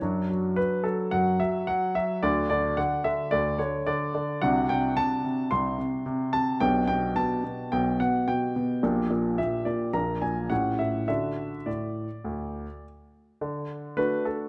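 Playful and elegant, this classical-period piano sonatina in D major moves at 108 BPM in 4/4, shaped with a supple rubato feel. A clear grand piano plays alone throughout the 14.5-second excerpt, spanning from Bb1 up to C6. The instrument sits up front and intimate, its polished tone carrying long sustain, while the close, detailed microphones catch audible action noise. A moderate recital hall reverb with an RT60 of 1.7 s gives the sound a gentle sense of space around the present piano. The harmony travels from D/F# through D7/C and G/B, darkens briefly on Gm/Bb and Bb7, then resolves through A7 to D before a new section begins at 13.4 s and the passage is cut from the longer piece.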